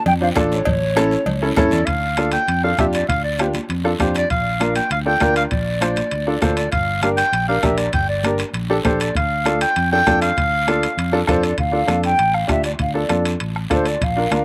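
Cumbia with a driving, passionate feel, this short excerpt is cut from a longer piece and moves in a straight four. A hollow, airy concert flute with vibrato opens the melody before handing over to a breathy clarinet, which enters at 1.6 s and plays until 11.2 s, taking a jazz-style solo, up front and soft in attack, before the flute returns at 11.3 s. Both winds carry a slapback echo, as does the clear upright piano, whose woody, slightly detuned tone, audible action noise and long sustain give the accompaniment an intimate, worn character. Beneath them a round, amped fingered electric bass holds the low end, while a soft-beatered bombo, ringing metal-shell cowbell and timbales, damped high-tuned congas in the background and a raspy guiro fill out the percussion. The sound is dry and open, as if played outdoors, with the chords moving from D minor through B-flat and G minor back to D minor.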